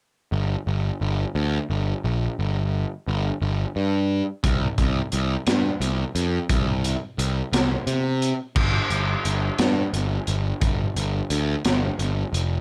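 A fuzz-drenched picked electric bass opens this dark, trippy psychedelic rock excerpt in G minor, its growly overdriven tone up front in a slow 6/8 at 58 BPM, before a crunchy, gritty breakbeat drum kit with a punchy kick, high-tuned snare and dark cymbals joins at 4.4 seconds in a dry, close-sounding room.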